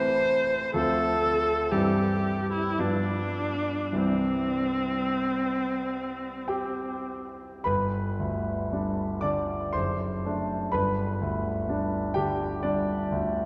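This romantic classical duo for viola and grand piano moves in a slow, rubato 3/4, drifting between 44 and 63 BPM with a warm, lyrical mood. A single bowed viola carries the melody up front, its tone focused and smooth at the top, with vibrato colouring each phrase. A polished concert grand piano accompanies with a clear, present sound, deep bass and a short sustain. The harmony moves from A minor through Dm7 and G7 to settle on C major at 4.0 seconds. The viola falls silent at 7.1 seconds, and at 7.7 seconds the key shifts to G major, with the piano continuing alone through G and D/F# until 13.5 seconds. A long church reverb and a dark, warm production wrap this fragment, which is cut from a longer piece, in a spacious, resonant glow.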